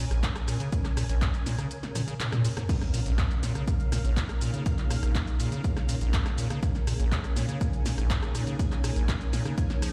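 Over a straight 4/4 pulse at 122 BPM, an overdriven, punchy electronic kick sits up front alongside a dry analog drum machine that supplies snare, handclaps, hi-hat, rim click, shaker, toms and crash cymbal in this raw, hypnotic acid house cut in Bb minor. A squelchy, hollow square-wave acid bass carries the riff, resonant and decaying, with cassette tape grit and digital delay, and a filter sweep runs across it through the opening 2.7 seconds. Beneath it, a lush vintage string machine holds sustained Bbm chords with ensemble chorus and sidechain pumping. The kick drops out from 1.7 seconds, and a drum fill enters at 2.0 seconds; then the drop lands at 2.7 seconds with an electronic impact in the background. From 3.6 seconds a cloudy, evolving granular pad drifts in behind, blurred and detuned, with its own reverb and pumping, while the mix itself stays fairly dry but loud, as if played through a big system in a bare room.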